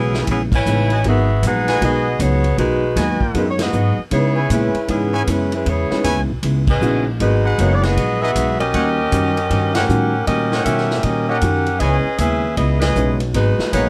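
Swinging in 4/4 at 156 BPM in G# minor, this brassy big-band jazz excerpt sets a smooth, vibrato-laden saxophone section up front on the melody over a woody pizzicato upright bass and a clean hollow-body electric guitar, while a tight, bright trumpet section adds stabs, a distant, roomy drum kit with punchy kick and ride drives the swing, and a mellow baby grand piano with audible action noise sits in the background, dropping out at 7.4 s before returning at 9.9 s, as the band hits accents over a C#m7, G#m7 and D#7#9 progression in a dry room.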